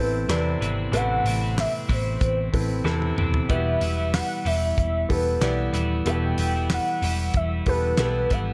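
A straight 4/4 pulse at 94 BPM drives this dramatic, earnest stretch of piano-driven pop in E minor, tuned to A4 = 436 Hz and cut from a longer piece. A dry, up-front 70s drum kit with a fat snare, tight kick and rolled-off top comes in at 0.3 s, adding hi-hat, handclaps and toms, and a drum fill at 2.9 s carries the harmony from Amadd9 to Em at 3.5 s. Underneath, a picked, short-scale hollow-body electric bass sounds dark and round through its amp. A polished, present grand piano with short sustain supplies the accompaniment, while a clean, compressed twelve-string electric guitar plays a picked riff. On top, a velvety synth lead carries the melody with a fast attack, blending detuned sawtooth and triangle in unison, with chorus, vibrato and portamento giving it a smooth, mellow, sustained line. Studio ambience frames the whole band.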